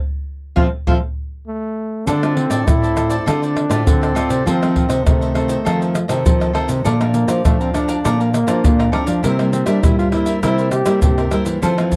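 A dry, close 1970s-style studio sound with light reverb frames this festive, sunny samba and choro fragment in D minor at 100 BPM, where a tight surdo, tube shaker, pandeiro and tamborim sit up front beside a crisp, picked cavaquinho, a bright, fingerpicked nylon-string guitar in the background and a thumb-plucked nylon-string bass, as a band accent opens the piece and a breathy, whispered trombone note at 0.6 s gives way to a punchy, forceful trombone entering at 1.5 s with scooped notes and light vibrato, soloing over chords that move from Fmaj7 through Dm7, F7 and Bbmaj7 to C7.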